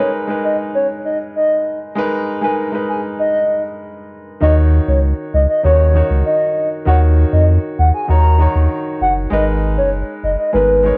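Dancehall with a hypnotic, bouncy feel, this short cut from a longer piece moves in a straight 4/4 and carries the soft haze of a home recording on cassette with light reverb. A hollow, woody synth lead in the manner of a clarinet carries the melody from the start, its warbling vintage tone colored by chorus, vibrato and tape echo. Beneath it, a clear, polished baby grand piano plays the accompaniment, sitting lower in the mix with a cassette-tape tint. At 4.4 seconds a deep, round sub bass enters and sits up front, giving the groove its weight as the harmony moves from Abmadd9 to Ebm7. The opening chord returns at 9.3 seconds before the passage closes.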